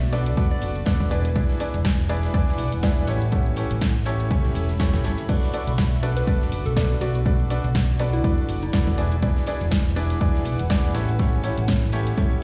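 Piano house at 122 BPM in B minor, energetic and soulful, where a bright baby grand piano riff with audible action noise rides over a round, dark hollow-body electric bass with tube saturation and sidechain pumping, an up-front overdriven electronic kick, a punchy analog drum machine, a very quiet acoustic studio kit on ride and snare, a blurred granular cloud pad in the background, and a gentle FM synth lead with chorus and delay that surfaces at 0.5 and 6.2 seconds, all cycling through Bm7, E7 and A7 in a large studio reverb.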